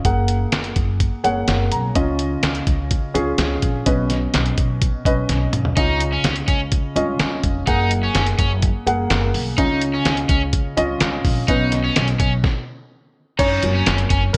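A straight 4/4 groove at 126 BPM drives this uplifting piano-driven pop fragment in F# major, carried by a lo-fi, sampler-style drum kit that sits up front with a thumpy kick, fat snare, hi-hat, handclaps, toms and crash cymbal, all compressed, pitched down and muffled under gated reverb. A dark, mellow upright piano, also up front and touched with analog chorus, lays down the accompaniment and slips in a short fill at 1.0 seconds, while a woody pizzicato upright bass with steel strings anchors the low end. At 5.8 seconds an overdriven, double-tracked electric guitar enters with a picked riff, its tone lightly thickened by subtle chorus. The harmony cycles through F#add9, C#add9 and Badd9 before the band drops into a stop at 12.4 seconds and resolves on F#. Light reverb and a bright 1980s-style digital production give the whole passage a glossy, buoyant finish.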